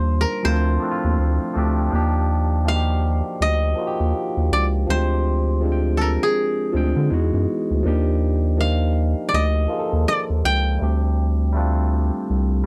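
R&B and neo-soul at 81 BPM with a swung sixteenth feel, this late-night, soulful fragment from a longer piece moves from Dm7 through Ebmaj9, Bb13/D and a brief Emaj9 before arriving on D7sus4. A woody, fingerpicked koto carries the melody up front over a bright, barky tine electric piano played through a combo amp with light overdrive and phaser, while a round, deep analog bass with a fast attack and sustained notes sits prominently underneath. The recording is dry and close, in a 1970s studio style.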